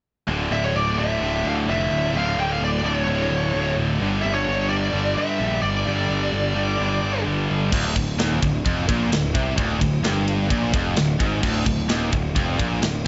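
A lightly reverberant, dark-topped mix opens this aggressive, epic heavy metal excerpt in D harmonic minor at 129 BPM, where two bright, high-gain rhythm guitars grind out a low riff in the background beneath a growly, fuzzed electric bass up front, a warm lead guitar with delay carries the melody over D5 and G5 power chords until 7.2 s, and a tight acoustic drum kit with bright cymbals and a tight kick crashes in at 7.7 s as the harmony settles on D minor.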